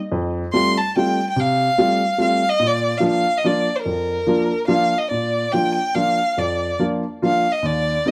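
A lilting 3/4 waltz swings its eighth notes at 143 BPM, giving this short excerpt from a longer musette piece a whirling, nostalgic sway in Bb major. A warm, woody upright piano sets the accompaniment from 0.1 s, its long sustain ringing through low bass notes and mid-range chords that move from Fadd9 to Bb. A single bowed violin enters at 0.5 s with the melody, its tone rich and smooth, carried by an even vibrato high above the piano. The opening phrase returns at 5.1 s, so the fragment feels like a dance caught turning back on itself. Both instruments sit up front in a dry, close studio sound with a 1970s character and little reverb.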